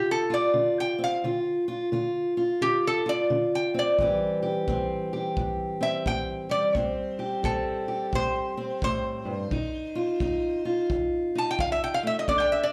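A bright, nasal lap resonator guitar played with a steel bar carries the slide melody up front in this brooding, smoky acoustic country blues, over a dark, woody, fingerpicked parlour steel-string guitar, with a punchy brushed kick drum entering at 4.0 s, both guitars touched by plate reverb and slapback echo in a live club sound heard through the venue's PA.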